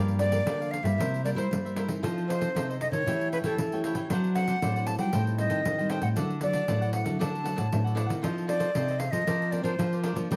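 Nostalgic and yearning, this brief cut from a longer samba and choro piece sets a breathy, close-miked silver flute singing a tongued, straight-toned melody up front over a crisp cavaquinho, a full-bodied fingerpicked nylon-string guitar, a deep background nylon-string bass with audible finger squeak, and a jingly pandeiro, all in a moderate studio reverb as the chords travel from Gm7 through A7/E and D7/F# toward a closing Bbadd9/F.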